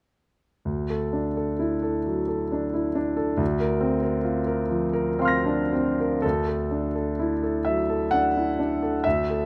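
A concert grand piano carries this short solo passage cut from a longer piece, its tone smooth and slightly vintage, with a deep bass and a long sustain that lets each chord hang in the air. The style is impressionist classical, hazy and serene, moving at a slow 64 BPM in 3/4 with uneven beats and a free, rubato feel. The harmony opens on Dadd9, shifts to Bbadd9/D at 3.4 seconds, and returns to Dadd9 at 6.2 seconds, where a new section begins. The piano spans from D2 up to Bb6 and sits up front, caught by close, detailed microphones. A moderate recital hall reverb softens its edges and adds a gentle sense of space.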